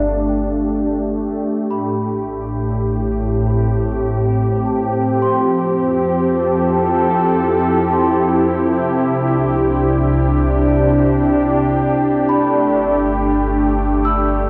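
The recording is bathed in a wet cathedral reverb with a 5.7-second tail, and a worn, old cassette tape lends it a warbly pitch drift. This peaceful, weightless ambient passage in 3/4 is cut from a longer piece and stays in one section for its full 14.5 seconds. Up front, a smooth, detuned vintage analog pad of sawtooth and triangle tones holds soft-attack chords through a lush chorus, moving from Gsus2 to Am7, Fmaj7 and Cadd9 before returning to Gsus2. In the background, a delicate, bell-like celesta with soft felt hammers plays sweet, mellow arpeggios through tape echo in a boxy small room, fading in across the whole passage. Beneath them, a deep, ominous drone carries the bass, dark and rumbling with a slow attack and its own built-in reverb.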